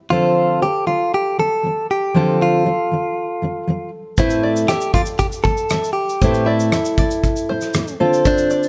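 A light reverb sits over this short, sunny acoustic pop cut taken from a longer piece, moving at an easy-going 118 BPM in a straight 4/4. From the start, a bright, clean electric guitar, recorded direct, compressed and placed up front, picks the melody in a middle register. Beneath it, a full-bodied jumbo steel-string acoustic guitar, also up front, is fingerpicked across a broad range as accompaniment, moving from F6 to Amadd9 and on to Dm7. At 4.2 seconds, a mellow, plunky open-back banjo joins with high, twangy fingerpicked arpeggios set lower in the mix. A loose indie drum kit enters at the same moment, with a punchy kick, rim click and shaker in a pumping studio room, and carries on with the guitars and banjo until the cut ends at 8.7 seconds.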